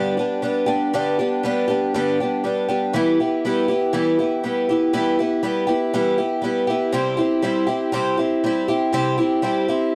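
A straight 4/4 pulse at 120 BPM carries this short, nostalgic and hopeful rock passage, played on a lone picked twelve-string acoustic guitar tuned slightly below standard pitch, at A4 = 439 Hz. The guitar sits up front with a woody, shimmering, octave-doubled tone and the dark voice of old strings, moving from G to Em at 2.9 seconds and on to C at 6.9 seconds. Light reverb lends a touch of air to an otherwise dry, close, 1970s-style studio sound.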